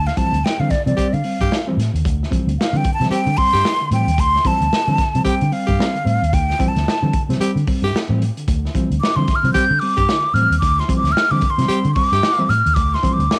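A breathy silver concert flute opens this sly, funky excerpt, sitting up front and close-miked with a mellow, tongued tone and vibrato as it carries the melody through a solo that spans the whole clip. Underneath, a reedy electric piano plays stabs with a medium tremolo and tube saturation, while a vintage fingered electric bass gives a round, foam-muted, dark line. A crunchy breakbeat drum kit of hi-hat, kick and snare comes in at 0.1 seconds, gritty and saturated with a tight kick and a rolled-off top, giving a swung sixteenth-note feel to the 4/4 groove. At 1.0 seconds a growling tenor saxophone adds a raspy second line around G4, quieter in the mix and shaded with light vibrato, until it drops out at 12.4 seconds. The harmony rests on a single Dm11 chord, and the home cassette recording wraps the flute, piano, drums and saxophone in tape colour, with light reverb and a small-room ambience around the band.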